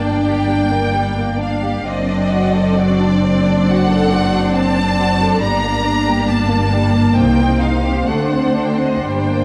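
A dark, wet scoring-stage sound frames this melancholic, yearning slow romantic movement for string orchestra, where rubato violins carry a focused, vibrato-rich melody over a bright, intense second violin line, smooth-topped violas, close cellos and distant, even double basses, all five sections playing throughout the 9.4-second fragment cut from a longer piece.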